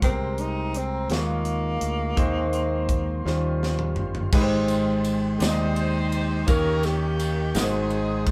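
Slow, jubilant and hopeful gospel in 6/8 at 56 BPM in Ab major, cut from a longer piece, where a breathy tenor saxophone with scooped notes and vibrato carries the melody until 3.6 s over an intimate baby grand piano, a round, punchy fingered electric bass, a soft, flute-like tonewheel organ with fast rotary speaker in the background, and a crisp fusion drum kit with a high-tuned snare that plays a fill before a jingly tambourine enters at 4.3 s and a tight, close-miked saxophone section takes up the melody at 5.4 s, the band playing together in one studio room with moderate reverb.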